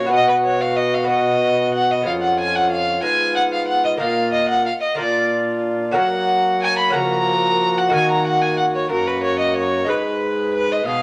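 A gut-strung violin, played by one player and set up front in period style, carries the second line with a reedy, bowed tone that rises above the rest of this short, courtly dance in a straight 6/8. The alto recorder sings the melody close to the ear, its woody, airy sound marked by a straight tone and a crisp chiff at each attack. A bright, delicate lute, fingerpicked on doubled gut strings with some octave pairs, fills in the accompaniment alongside a dark bassoon that sits in the background with a light vibrato. A mellow trombone anchors the bass with a smooth top to its sound. The solemn harmony moves from B through Fdim, a suspended Bbsus4 resolving to Bb, then Gb and Ebm before closing on Abm, and a wet stone-room reverb gives the whole consort a resonant space.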